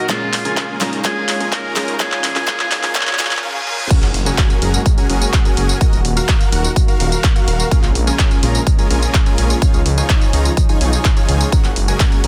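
A buzzy, metal-muted trumpet sings a jazz-style melody with scooped notes and dub echo over a picked steel-string acoustic guitar, a lush, warbling chorused pad and a huge detuned supersaw riff, all building through a filter sweep and drum fill in this uplifting, euphoric festival progressive house piece at 126 BPM in F# major. A punchy, up-front electronic kick and a layered big-room kit of crash, handclaps, hi-hat and tambourine play from the opening moments. The trumpet and guitar stop at 3.4 seconds, and at 3.9 seconds the drop lands with a very quiet impact. From 4.0 seconds, a menacing, saturated saw bass pumps with the sidechain alongside the pad and supersaw. Chords move from A#m7 through F#add9, D#m and C#add9 under a dense, heavily limited master with light reverb.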